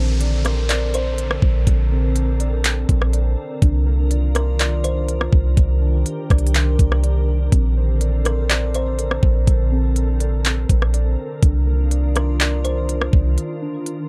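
A dark, dry mix opens this floating, blissful slice of atmospheric cloud-rap in a half-time feel, with a glassy, ethereal FM pad holding sustained chords through ensemble chorus and its own reverb while muted, soft synth keys play arpeggios in the background through chorus, a low-pass filter and tape echo. An electronic downlifter sounds during the first 3.6 seconds, as a deep, boomy 808 bass and an electronic trap kit with knocking kick, crisp hats, handclaps and rim clicks sit up front, and a woody, plucked kalimba carries the melody through its own low-pass filter and tape echo. The chords alternate between Bbmaj9 and Cm11, and the bass stops at 13.4 seconds for a brief break.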